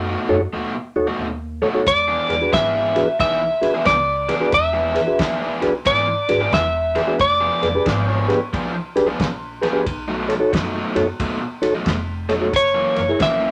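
Moderate studio reverb wraps this soulful, gritty electric blues shuffle excerpt, where an overdriven garage guitar riff and woody pizzicato upright bass begin at 0.0 s, a mellow, flute-like tonewheel organ with a slow rotary speaker sits up front, and at 1.9 s a dark soul drum kit with a fat snare enters alongside a compressed, slightly broken-up lead guitar that carries the melody until 8.5 s before returning near the close.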